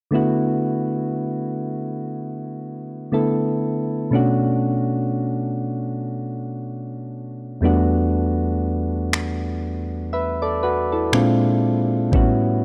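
Contemporary R&B in D major at a slow 60 BPM with a light sixteenth-note swing, this smooth, dreamy passage is carried by soft, round electric-piano-like synth keys with a chorus effect, moving through lush extended chords from D69 to Bm9, Em11, Bb9 and A13. At 9.1 seconds an overdriven electronic drum kit joins up front with finger snaps and a knocking kick. The dark production sits in light digital reverb.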